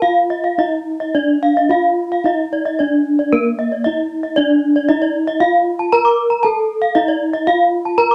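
A bronze gamelan metallophone struck with a horn mallet carries arpeggios high above, its tone metallic and ringing, with the shimmering beats of paired tuning. A second bronze metallophone, played with a wooden mallet, holds the melody in a lower register, full and up front. Both are close-miked and dry, yet they sit together in a large studio room whose wet reverb suggests an ensemble playing live. The mood is hypnotic and shimmering, moving in a straight 4/4 at 104-116 BPM. This brief passage, cut from a longer piece, runs 8.1 seconds, shifting into a new section at 4.4 seconds.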